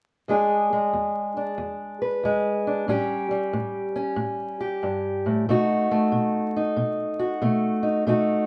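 Soulful and laid-back, this short excerpt of acoustic country blues moves with a relaxed swing in four. A single fingerpicked steel-string acoustic guitar carries everything from 0.3 seconds to 8.5 seconds, sitting up front with a dark, boxy parlour character. Its range runs from low E up to the B above middle C, and the harmony moves from E7 to A7 at 2.9 seconds and on to B7 at 5.5 seconds. A moderate large-studio reverb gives the guitar a sense of space, as if played live in one room. A layer of vinyl crackle adds an aged, lived-in feel to the sound.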